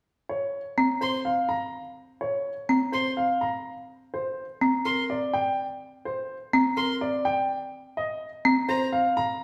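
A woody, bright marimba struck with hard mallets sits up front, playing percussive arpeggios from 0.8 seconds, while a clear, polished baby grand piano carries the melody. A rich, bowed solo violin with vibrato adds its own focused arpeggios higher up. This meditative, hypnotic piece of minimalist classical pattern music is a short section cut from a longer work, set in a large, reverberant studio room heard from further back.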